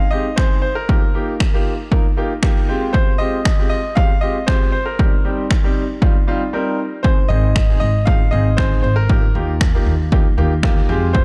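A brilliant, polished grand piano opens with a short-sustained melody sent through digital delay, joined at once by a second, clear and open grand piano whose accompaniment pumps with sidechain over chords moving from Ab through Ebadd9 and Fmadd9 to Cm. A punchy, overdriven analog drum machine with kick and finger snaps sits up front in a large room, driving this euphoric, carefree dance-pop at 117 BPM in a straight 4/4 under dark studio reverb. After a brief break at 6.5 seconds, a woody pizzicato upright bass enters at 7.3 seconds with its own sidechain pumping, and a grand piano fill arrives at 10.4 seconds before this cut from a longer piece ends.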